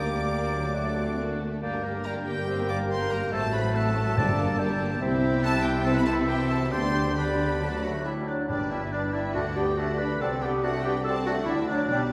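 A quick, stormy classical-period movement in G minor at 140 BPM opens with a chamber violin section carrying the restless melody over bowed, vibrato-laden strings: a lush studio violin section, a very quiet distant viola section, a rich double bass section and a background cello section with expressive portamento. A distant, roomy clarinet, a clear oboe, a pure straight-toned flute and a present bassoon weave second lines and accompaniment, while a tight French horn section holds sustained chords and calf-head timpani on G2 strike at 4.2 and 8.5 seconds. A mellow trumpet section adds stabs from 7.8 seconds, all heard from further back in a reverberant recital hall in this passage cut from a longer piece.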